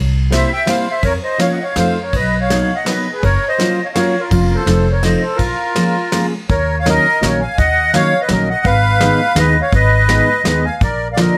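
Bittersweet and whirling, this excerpt from a longer musette waltz turns in 3/4 at 166 BPM with a rubato feel, moving from Bb minor into Eb minor at 6.5 s. A reedy, sweet, airy accordion with light tremolo tuning carries the melody up front, over a dark, full-bodied fingerpicked steel-string acoustic guitar and a woody pizzicato upright bass that starts alone at 0.0 s before the others join at 0.3 s. A soft brush drum kit with a punchy kick and medium-tuned snare sits low in a small room, and light reverb surrounds the blend.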